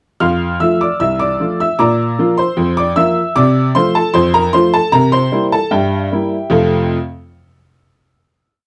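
A clear, woody upright piano, slightly detuned and boxy, plays a cheerful, jaunty ragtime piece alone in a straight 2/4, carrying the tune in filled octaves over a stride bass through a short opening section that moves from F to Bb and on to C7 before settling on a final F chord at 6.5 seconds, all captured up front by close, detailed microphones with little reverb.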